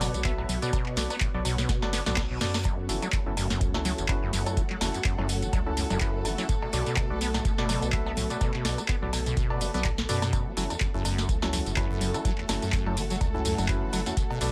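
A hypnotic, raw acid house groove at 125 BPM in 4/4 with a 56% swing on the 16ths, built on an overdriven electronic kick and a booming analog drum machine whose crisp snare, metallic hats, handclaps, congas, cowbell and tambourine sit dry and up front. A squelchy, resonant sawtooth acid bass riff with lush chorus rides over a thick, saturated sine sub bass that pumps against the kick, while hollow, organ-like stabs carry 12-bit sampler grit and dub echo. Far back, an ethereal detuned pad and, from 2.6 s, a dark, woody bowed string section hold sustained chords moving between Bm7 and F#m7, after a drum fill from 1.7 s and a brief reverse cymbal swoop from 1.9 s, both ending at 2.6 s.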